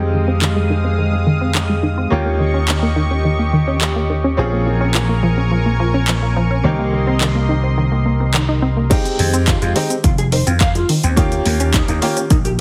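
Nu-disco at 106 BPM in F minor, groovy and sleek, this short cut opens with a brilliant, worn grand piano trailing dub echo, a thick detuned sawtooth pad pumping under sidechain, and lush unison plucks spinning delayed arpeggios over a growly, up-front slap bass with tube saturation, while a house kit of warm hats, shaker, handclaps and crash joins at 0.4 seconds. At 8.9 seconds the pad drops out as the drop arrives, bringing a punchy layered electronic kick and a dark, clean fingered electric guitar riff bathed in chorus. The mix is heavily compressed with a radio-like sheen and light digital ambience, cycling through Fm7, Eb7, Bbm7 and Cm7.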